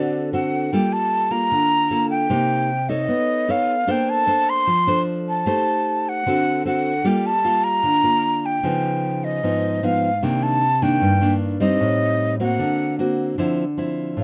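This bossa nova fragment in G minor moves at 152 BPM in a straight 4/4, with a melancholic, wistful mood. A breathy jazz flute carries the melody within a range of D5 to C6, its metal tone softened by a gentle attack, lifted highs and an expressive vibrato. A fingerpicked nylon-string guitar supplies the accompaniment across a span from G2 to C#5, with a classical, acoustic character and audible finger squeak. Both instruments play throughout the 14.2 seconds and sit up front, wrapped in light reverb and a dark, warm production. The harmony drifts through rich extended chords such as Gm9, Bbmaj9 and Am7b5, passing through a Daug7 near 12.6 seconds before settling on Dm9 at 13.4 seconds.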